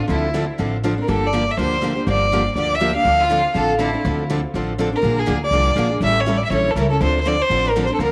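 A fast swing pulse at 243 BPM in 4/4 drives this short, fiery and bittersweet excerpt of acoustic string swing in the gypsy jazz manner, set in D minor. Two picked steel-string acoustic guitars carry the accompaniment from the start: one bright with an auditorium sound, the other warm with fresh strings, audible finger squeak and a background, concert-hall placement. Beneath them, a woody, growly pizzicato upright bass sits up front with a thumpy, steel-strung bite. The lead violin enters at 1.0 seconds with a warm, expressive bowed tone, soft attacks, vibrato and sliding portamento, colored by tape echo. A second violin, rich, smooth and more distant, adds a brief second line at the very start and again around 3.2 seconds, over a wet spring reverb that surrounds the group as the harmony moves from Dm9 through Gm7, Bb7 and A7b9 back to Dm7.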